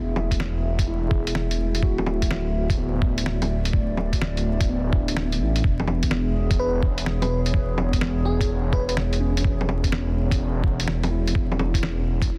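Future garage with a wistful, ghostly mood, where a menacing, detuned saw bass sits up front beneath a deep, moody analog pad with lush chorus and a mellow tine electric piano in the background, all three pumping under sidechain, while muffled, pitched-down sampler drums with a fat snare, bongos, hi-hat and a thumpy kick play along, everything dusted with vinyl crackle, until a sparkling, bell-like FM electric piano melody appears at 6.6 seconds.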